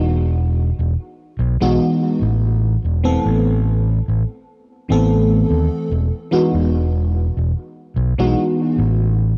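A dreamy, faded vaporwave excerpt opens with a lush FM electric piano layered over a soft pad, its detuned, mellow tone shimmering through phaser, chorus and delay as it moves from Emaj9 to Amadd9 and back, with a lazy swing. Underneath, a punchy, overdriven fingered electric bass sits up front with a bright, amped tone. Light reverb and a dulled cassette-tape sound wrap the short passage, with the piano dropping out at 8.8 seconds and the bass ringing on until 9.3 seconds.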